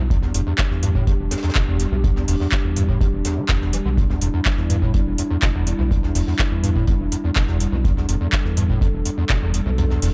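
A dark analog pad holds an Em7 chord with sidechain pumping, alongside a squelchy, gritty overdriven acid bass riff carrying a resonant filter sweep and cassette-tape saturation, and a round, deep analog bass underneath, all from the first moment of this driving, raw acid house excerpt at 124 BPM in E minor. A deep, tape-toned electronic kick and a booming analog drum machine with handclaps and metallic hats push a straight 4/4 pulse. A tight funk kit's high-tuned snare and hi-hat sit in the background with dub echo. The mix is dry of reverb but echo-heavy, and the kick drops out from 9.8 seconds.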